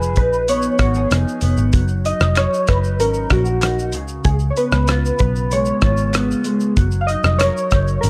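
Laid-back and sunny, this short cut from a longer indie and bedroom pop piece moves at an easy 95 BPM in a straight 4/4, sitting in F# major with a dark, warm production and a small room ambience. Soft, round electric-piano-like synth keys carry the melody up front, their gentle, full-bodied tone coloured by ensemble chorus and tape echo. Beneath them a mellow, clean electric guitar plays fingered accompaniment through analog chorus and a vibrato effect, while a vintage foam-muted picked bass sits up front with a round, amped sound. A damped 70s drum kit keeps things dry with a tight kick, hi-hat, rim click and shaker, its top end rolled off, and a very quiet, crisp group handclap joins close by from 2.4 to 7.5 seconds. The harmony drifts through Fm7b5, F#6 and C#7 before settling back on F#6.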